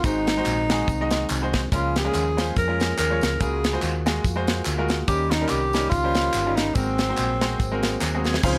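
Swung eighths drive this soulful, uplifting uptempo gospel passage, cut from a longer piece, with a tight, dry funk drum kit up front and a round, punchy hollow-body bass underneath. A breathy, close-miked tenor saxophone carries the subtone melody until 8.0 s, over brilliant grand piano, a clean tonewheel organ turning through a slow rotary speaker in the background, and distant tambourine and handclaps. A drum fill closes the passage at 8.0 s, and the whole sits in light reverb and small room ambience.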